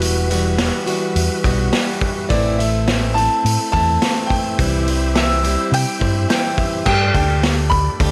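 A steady, straight 4/4 pulse at 105 BPM drives this short excerpt of folk rock and heartland rock in A dorian, its mood wistful and dusty. A vintage drum kit sits up front with a punchy kick, medium-tuned snare, hi-hat and dark crash cymbals, its sound saturated and gritty with a rolled-off top. Beside it, a fingered electric bass comes through round and amped, while a picked, plugged-in swing-style acoustic guitar plays a boxy accompaniment on fresh strings. Back in the mix, a bright, reedy tonewheel organ holds sustained chords with key click, chorus vibrato and a fast rotary speaker. At 2.3 seconds a grand piano enters with a warm melody in a high register, and a woody, double-strung mandolin adds a brief second line from 5.2 to 6.7 seconds. The chords move from Emadd9 through Am and C to a closing Gsus2, all set in light reverb.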